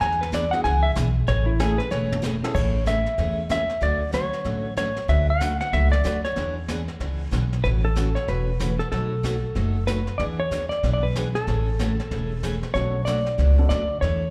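Western swing country, cheerful and swinging at 188 BPM in A major, caught live through a club PA: a dark, compressed lap steel carries the up-front melody with slapback echo, opening with a slide solo while the brush kit, with its dark cymbals and boomy kick, plays a fill at 1.9 seconds. A thumpy, woody upright bass drives the bottom, and a bright, full-bodied picked acoustic guitar fills in chords like Amaj7, Bm9/D and E6. A polished upright piano sits in the background, appearing only from 0.5 to 2.5 seconds and again near 12.7 seconds.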